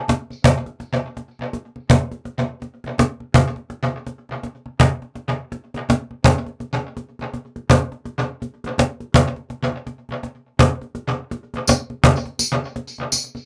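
A snappy, saturated cajon struck with hard hands and carrying a tape echo leads this bittersweet, smooth reggae excerpt with a swung sixteenth feel in a dry, close 1970s-style booth, joined up front by an echoed tambourine blending maracas and group handclaps from 11.7 s.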